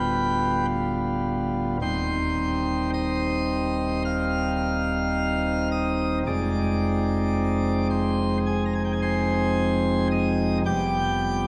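Vinyl crackle sits under a wet church reverb as a solo chamber organ plays its full principal chorus, placed up front with a distinct chiff at the start of each note and reaching from deep D1 tones up to G6. This solemn, grave classical chorale fragment moves with a rubato, hymn-like breadth through G7/D, Cm/Eb at 1.8 seconds, Fm7 at 6.3 seconds and G7/F at 10.6 seconds, ending unresolved as it is cut from a longer piece.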